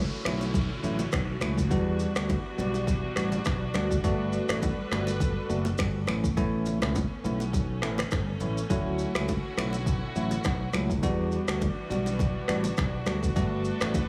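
Hypnotic and mellow, this afrobeats excerpt at 103 BPM in E dorian sways with a gently swung sixteenth feel as an up-front, overdriven electronic afro-pop kit with a deep kick, finger snaps, rim click, shaker and toms drives a growly, punchy fingered electric bass, a bell-like tine electric piano, lush bowed strings with woody vibrato, and very quiet close, dry bongos and congas, while a background downlifter ends by 4.0 seconds over chords moving from Dmaj7 through Em7, Gmaj7 and Aadd9 in a light small-room ambience.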